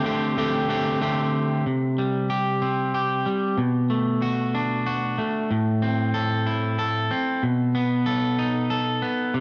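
Rock in a restless, cool 6/8 at 62 BPM, this fragment of a longer piece features a lone picked electric guitar, twangy and slightly broken-up, sitting up front with spring reverb as it moves from D7sus4 through C5, Bm7 and Am to B7, all within a dark, warm production with light digital ambience.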